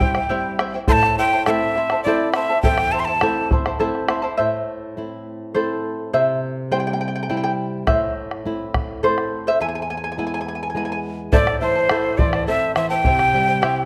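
A straight 3/4 pulse at 103 BPM carries this wistful, melancholic Andean folk piece in A minor pentatonic, cut from a longer performance. A breathy cane quena sits up front with the melody, its end-blown tone marked by vibrato, tongued chiff and an unsteady quality, before falling away at 3.5 seconds. The charango, fingerpicked on its shimmering double strings with some octave-doubled courses, takes a solo from 4.4 seconds, and the quena returns at 11.3 seconds. Beneath it all, a boxy flamenco guitar fingerpicks its low accompaniment, while a deep, dark bombo, close and dry, marks the beat through most of the passage. The harmony moves between C, A minor and a tense E chord during a short break, and the close, detailed miking sits in a moderate scoring-stage reverb.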